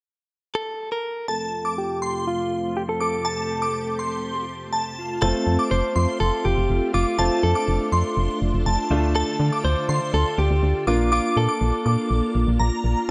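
A straight 4/4 pulse at 122 BPM drives this upbeat yet wistful pop excerpt in F major. A clean, compressed, direct-recorded electric guitar carries the up-front picked melody, joined at 1.3 seconds by a shimmering, warbling bell line with a dreamy chorus-and-delay halo and by vintage organ-like ensemble string chords under a filter sweep running until 5.2 seconds. At that point a natural-sounding baby grand piano adds short-sustain accompaniment and a punchy, round, dark FM bass anchors the low end, all in a light reverb as the harmony moves from F to Dm to Bb.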